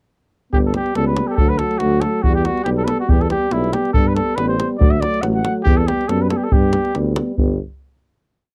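Virtuosic and festive, this short, complete Balkan brass band piece in a swung 2/4 swagger has the close, unadorned sound of a 1970s studio session. A mellow, vintage trumpet leads up front from 0.5 seconds, building its tune from short motifs shaped into sentence-like phrases before falling away at 7.0 seconds. Beneath it, two euphoniums each hold one line of the band's chords as a steady pulse in the background: one dark and close-miked with a soft attack, the other clear and distant in a roomy space, touched with light vibrato. A warm tuba with a smooth top anchors the bass, alternating root and fifth on the main beats. A tight, acoustic davul drives a two-stick pattern with a dry, close sound, and the ensemble settles on a final chord at 7.4 seconds.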